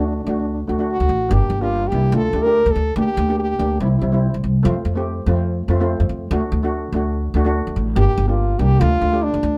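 A lightly swung sixteenth-note lilt in 4/4 drives this sunny, festive calypso fragment, cut from a longer piece. Up front, a clear French horn carries the melody as a solo voice in a classical style, sounding from the start until 4.3 seconds, then returning at 8.0 seconds to close the phrase. Beneath it, a double-seconds steel pan struck with medium rubber sticks supplies shimmering, metallic accompaniment with a dark, smooth tone until 9.4 seconds. A pizzicato upright bass with gut strings sits just as far forward, its woody, thumpy notes anchoring the low end throughout. The harmony moves from D through G minor, D minor, C and F before returning to D and the minor chords, all set in light reverb.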